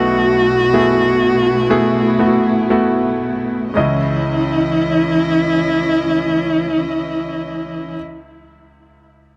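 A straight 4/4 pulse at 55-66 BPM slows through the first 3.8 seconds of this longing, emotional pop excerpt in C# minor, tuned to A4 = 441 Hz, as a dark, bowed solo cello sings an expressive, smooth-topped melody up front and a warm studio string section holds sustained chords beneath, both shaped with vibrato and portamento, while a bright, polished grand piano with short sustain accompanies; the harmony moves from B7sus4 to C#madd9, the cello and strings stop at 8.0 seconds, and the piano carries on alone to 9.4 seconds, all captured in a dry, close 1970s-style studio sound with light reverb.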